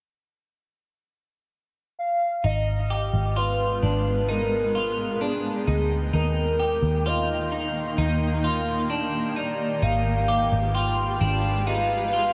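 Floating and dreamy, this dream pop fragment drifts at a slow 65 BPM in a straight 4/4, cut from a longer piece and bathed in an echo-heavy mix with a moderate echo chamber reverb. A warbling, nostalgic lead synth carries the melody from 2.0 seconds, its detuned, wave-folded tone mellowed by chorus, vibrato, shimmer reverb and dub echo. Just after, a clean, hollow-body electric guitar picks arpeggios up front through analog chorus, shimmer and echo, while a dark, foam-muted electric bass sits round and punchy beneath, and a cloudy, granular pad blooms in at 3.3 seconds with slow-attack, blurred sustained chords. The harmony moves from Abm6 to Ebmaj7 and back to Abm6, and at 10.3 seconds a faint, inharmonic FM chime rings high in the background, shimmering with tremolo and ensemble chorus.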